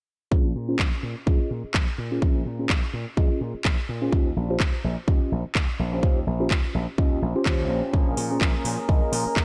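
A filtered disco house groove at 126 BPM in Bb dorian opens at 0.3 seconds with a punchy, up-front electronic kick, a gritty overdriven slap bass, a bell-like tine electric piano with a phaser, and a barely audible tambourine. The piano and bass both pump with sidechain compression under a low-pass filter as a filter sweep runs through, and house claps and metallic hi-hats join at 0.8 seconds, their 16ths swung at 56% over Bbm7 and Eb13 chords. At 7.9 seconds a reedy, gut-string chamber section enters in the background with sustained chords, alongside a twangy envelope-filtered guitar riff; both pump and sit under the filter. The nostalgic, funky mood sits in a light digital ambience in this short cut from a longer piece.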